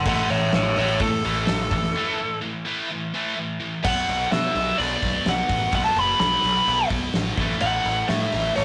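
Hard rock at 127 BPM in a straight 4/4, heavy and menacing, cut from a longer piece and captured as a rough rehearsal-room recording with tube saturation and a moderate stone-room reverb. A biting, overdriven lead guitar carries the melody up front, soloing from the start to 3.8 seconds with a break from 2.0 seconds, over a bright, double-tracked high-gain rhythm guitar riff and a fuzzy, overdriven picked bass. A big acoustic drum kit, dark and smooth with a fat snare and punchy kick, drives it alongside hi-hat and crash, while the harmony moves from A5 to B5 at 3.8 seconds and back to A5 at 7.4 seconds.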